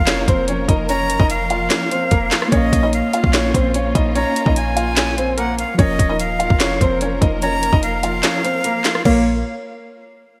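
Bright 1980s-style digital production bathed in lush hall reverb frames this dark, menacing half-time trap excerpt at 147 BPM in Bb minor, where a soft felt-muted upright piano with audible action noise carries the melody through digital delay, a breathy jazz flute with crisp chiff adds a second line, warbling chorused synth keys and a bowed symphonic string section sit in the background, a deep, boomy 808-style bass anchors the low end, and an up-front trap kit of hard-clipped kick, sharp snare, metallic hats, handclaps and rim clicks under gated reverb drives it all until the kick drops out at 8.2 seconds over the shift from Fsus4 back to Bbm.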